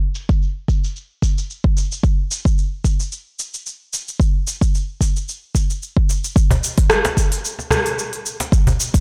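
An organic-sounding electronic drum kit opens the track at 0.1 s, its crisp hi-hats, rim clicks and shaker sitting up front with an overdriven grit and a low-pass filter dulling their top end. A deep, produced electronic kick joins at 0.3 s, anchoring a warm, earthy downtempo groove at 111 BPM in 4/4 with a gentle sixteenth-note swing. The kit also carries the character of a large room, though that room sound is filtered too. Near the close, at 6.5 s, a snappy acoustic cajon arrives, played close with soft hands and with its snares rattling, adding an acoustic texture. The whole recording has a blown-out, saturated quality under a light reverb, and it is cut from a longer piece.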